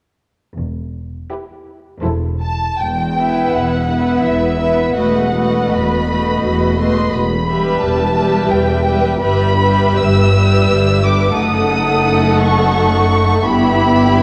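In a rubato 3/4 pulse drifting between 74 and 89 BPM, this solemn, yearning slow movement for string orchestra in E minor opens with bowed cellos and double basses at 0.6 s, the cellos sitting in the background and the basses lush and focused. At 1.3 s the violas add a smooth, distant accompaniment while a second violin line sounds close and expressive, beneath a first violin melody with a vibrato-laden, focused, smooth top. The harmony moves from E minor through a B7 over E and a diminished chord over F#, all heard through a 2.4-second concert hall reverb and a worn cassette tape's warbly pitch drift.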